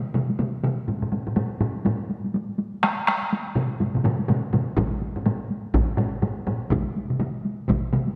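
Japanese traditional taiko drum ensemble music, driving and ceremonial, moving at 124 BPM in 4/4 with a swung sixteenth-note feel in this short cut from a longer piece. Four taiko parts are struck with hard and heavy sticks and sit close or up front. Two begin almost at once, a third joins at 0.9 s, and a fourth, close and dry, enters at 4.8 s, all within a reverberant concert hall that gives the hits a resonant tail.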